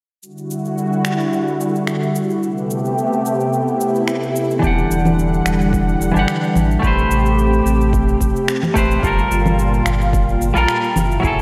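A sunset chillout excerpt with a smooth, warm mood and a gentle swing, drifting through minor ninth chords in a dreamy mix soaked in lush hall reverb. A thick, airy sawtooth pad sits up front from the start, its detuned unison voices sustaining long chords through chorus, phaser and shimmer reverb, while a layered electronic percussion bed of cabasa, finger snaps and congas ticks along beneath. A background electronic swell enters at 3.7 seconds to usher in the fuller second passage at 4.6 seconds. There a bright, clean semi-hollow electric guitar steps forward, its compressed picked tone trailing diffuse ambient delay and shimmer reverb, joined by a round sine sub bass and a punchy, layered electronic kick tucked into the background. The harmony glides between Em9 and Am9 before shifting to Gm9 at 9.0 seconds, lending a late touch of color to the hazy glow.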